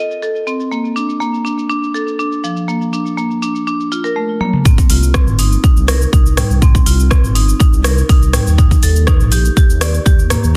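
Afro house at 122 BPM in C dorian, this short excerpt carries a spiritual, driving mood. A mid-forward marimba struck with medium hard mallets opens the track with arpeggios, treated with delay and sidechain pumping, over an electronic afro-pop drum kit of cabasa, metallic hats, rim click and toms, each filtered low-pass and set in a large room. The chords move from Bbmaj7 toward Cm, and after a drum fill at 4.4 seconds the drop lands at 4.7 seconds with a punchy, layered electronic kick placed up front with a tape-like warmth. A dark, detuned sawtooth bass enters just after, deep and rumbling with a beating, sustained tone shaped by sidechain pumping, before the harmony shifts to Eb at 8.6 seconds. The mix is dry, dense and heavily limited in a modern style.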